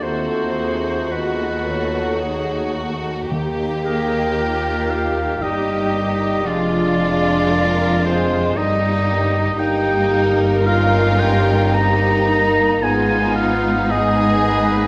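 A classical orchestral passage in Eb major, slow at 56 BPM in 3/4 with a rubato feel, this warm, lyrical excerpt is cut from a longer piece. A rich, focused violin section carries the melody with vibrato, while a second, very quiet and lush violin line sits close beneath it alongside an oboe solo with light vibrato and a vintage tone, a hollow, airy flute in the background, and a mellow, distant clarinet. A dark bassoon and a smooth, even viola section fill in the accompaniment, and a roomy French horn section holds sustained chords behind them. The cello section and a soft-attacked, distant double bass section anchor the low end, and timpani on Eb3 sound briefly from 3.3 to 4.9 seconds, close and dry in the background. The harmony moves from an Ebdim7 opening through Eb and Eb7/G before settling on Abm, all bathed in a scoring stage reverb with a 1.9-second decay.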